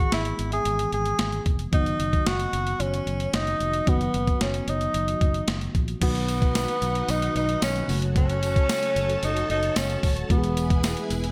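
A breathy tenor saxophone carries the romantic, nostalgic melody of this 1980s-style pop excerpt at 112 BPM, treated with digital delay over a mellow, chorused and phased FM electric piano, a round fingered bass and a gritty, pitched-down sampler-style drum kit with gated reverb, while shimmering string-machine violins and a jingly tambourine join at 6.0 seconds in a bright, plate-reverb digital sheen.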